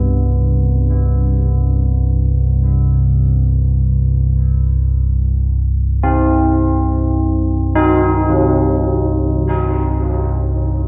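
Dark ambient drone in free time, this short excerpt carries an ominous, dark mood from its first moment. A deep rumbling drone sits up front throughout the roughly 10.9 seconds, its slow attack, sustained body and long release giving it a deep, rumbling weight bathed in its own built-in reverb. Old church bells play arpeggios above it, their bronze, clangorous tone marked by an iron clapper, a minor-third overtone and a beating shimmer that sounds vintage and band-limited. A dub echo trails each bell stroke, and the whole mix is steeped in a wet echo-chamber reverb that lingers for about 2.3 seconds. Both parts play from start to finish, the bells and drone sharing the foreground in a cavernous, echo-heavy space.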